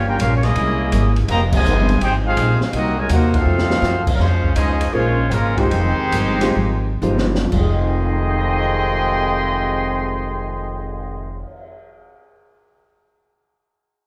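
Big band swing with a swinging, sultry mood, this excerpt sets a clear, up-front trumpet section with light vibrato over a smooth trombone section, a woody, thumpy pizzicato upright bass, a dark-cymbaled jazz kit with a high-tuned snare and boomy kick, a very quiet picked acoustic guitar, and a very quiet saxophone section holding sustained chords until 4.2 seconds, after which a mellow baby grand piano enters in the background at 4.9 seconds while the band slows from 4.2 to 7.5 seconds, all heard as a band playing live in one room with a large, wet studio reverb.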